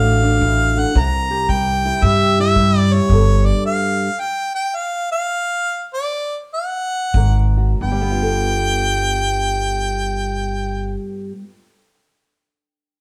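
A clear, up-front harmonica with light vibrato and scooped, jazzy notes leads this rollicking, gritty acoustic country blues excerpt in swung 4/4 at 88-112 BPM in G mixolydian, over a dark, boxy, fingerpicked ladder-braced guitar on old strings, a steel-strung pizzicato upright bass and a punchy brushed kick in the background. A stop arrives at 3.1 s as the tempo begins slowing until 7.8 s, and bass and kick return at 7.1 s, before the woody guitar rings on alone to 11.7 s in a moderate studio reverb heard from further back in the room.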